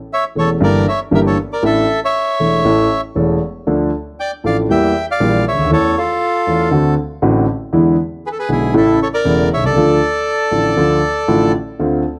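A dry, close 1970s-style studio sound with small room ambience frames this tense, dramatic tango fragment in D harmonic minor at 118 BPM with a rubato feel: a reedy, bright, airy bandoneon carries the melody up front from 0.1 seconds, while a concert grand piano with deep bass, also up front, accompanies from 0.4 seconds through chords that move among A, Dm, D7 and E7.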